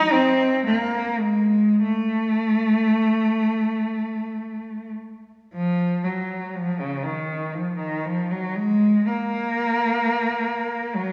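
Heard from further back in a wet concert hall with a 1.8-second reverb tail, this lonely, mournful classical fragment presents a single bowed cello playing alone in a free, rubato 3/4 that drifts between 41 and 66 BPM, its warm, expressive voice shaded with vibrato and portamento as it moves between Db3 and Eb4, tuned to A4 = 442 Hz.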